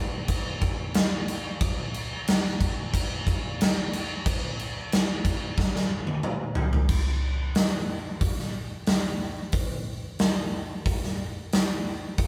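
A big acoustic rock drum kit, up front and natural with a punchy kick, medium-tuned snare, bright cymbals, hi-hat and toms, drives this menacing, heavy straight-feel rock excerpt in a lightly reverberant room that sounds like a band playing live, with a drum fill from 5.6 to 6.9 seconds leading into the second section.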